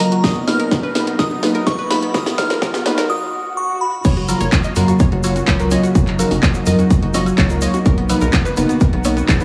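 A punchy, up-front electronic kick enters at 0.2 s in this uplifting, hopeful progressive house excerpt, joining a house drum kit with a cracking snare, a lush background unison pad, round analog pluck arpeggios, deep, warbling chord stabs and a crystalline FM bell melody alongside a very quiet digital wavetable pluck, while a faint riser builds toward the drop at 4.0 s, where a tight sawtooth sequencer bass and a grainy egg shaker arrive, with background congas and woodblock following at 4.3 s; sidechain pumping moves the pad, stabs and bass, and a hall reverb surrounds the mix.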